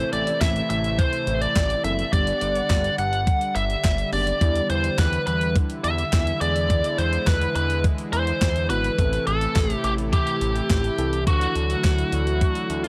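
A biting, overdriven lead guitar opens this bright, wistful synth-pop excerpt, carrying the melody up front between F#4 and F#5 over a brassy, chorused analog pad, a fat, detuned analog bass and a worn, slightly out-of-tune tine electric piano tucked in the background. At 0.1 seconds a clean 12-bit drum machine joins, sitting up front with a thumpy kick, a medium-tuned snare, handclaps and hi-hat, its sampler-style sound re-recorded in a small room. The bass blends sawtooth, triangle and wave-folded tones with a fast attack and a filter sweep, while the sustained pad uses soft-attack sawtooth chords with its own filter sweep. The tempo is a straight 105 BPM in 4/4, tuned to A4 = 439 Hz, moving through Am, Gmaj7, Em7 and E7 before returning to Am and closing on Dadd9. The electric piano stops at 12.0 seconds, and the whole mix sits in a gritty hardware recording with digital ambience.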